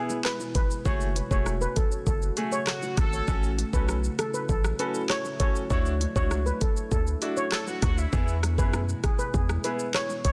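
A mellow steel pan melody with tape echo opens this hypnotic, sultry dancehall excerpt at 99 BPM over clear concert grand piano and a deep, moody pad, both pumping with sidechain, before an up-front electronic drum kit with knocking kick, smooth hats, handclaps, rim click and shaker, very quiet low-tuned bongos, a punchy 808-style bass entering at 0.9 s, and a distant, roomy horn section with light vibrato briefly appearing at 2.7 s and 7.5 s fill out a dense, heavily limited mix.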